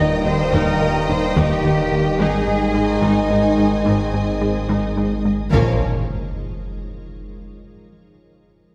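Vast and relentless, this hybrid orchestral and electronic film score cue moves at 72 BPM in a straight 6/8, with lush bowed violins carrying a melody and a second line over a very quiet viola accompaniment, while cellos, double basses, a deep punchy sub bass and a funky sawtooth analog bass riff anchor the low end beneath sustained chords from clear trombones, a very quiet French horn section and a pure, organ-like pad with ensemble chorus and built-in reverb. A round, tine-like thumb-piano synth pluck traces arpeggios through the Eb and Ab harmony, all set back in a wet scoring-stage reverb. At 5.5 seconds the harmony turns to Bbm as an up-front electronic impact strikes and rings on until 7.2 seconds, where the cut ends.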